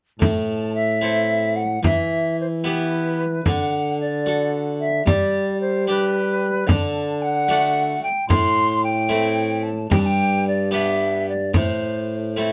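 From 0.2 seconds, a small, bright frame drum, a plucked, brilliant harpsichord, a trombone bass and a hollow silver flute carrying the melody begin together in a rustic, solemn Renaissance-style consort dance in 6/8, moving at 74 dotted-quarter beats per minute in A dorian. The flute sounds pure and mellow, with vibrato and a crisp attack, above the airy, full Flemish-style harpsichord, while the punchy trombone holds the low line with light vibrato and the hard-handed drum sits dry and up front. A touch of reverb surrounds the close, detailed sound of this short cut from a longer piece, which ends at 12.5 seconds.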